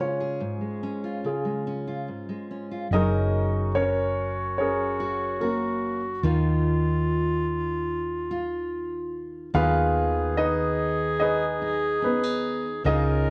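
Worn, warbling cassette tape with light reverb colours this hopeful, intimate acoustic folk-pop ballad at 72 BPM in F# major, where an up-front grand piano with slapback echo and deep bass carries the melody over a warm, fingerpicked steel-string acoustic guitar from the start, and at 2.9 seconds a clear, soft-attacked clarinet adds a second line as a round, punchy hollow-body electric bass enters beneath, all in a short cut from a longer piece.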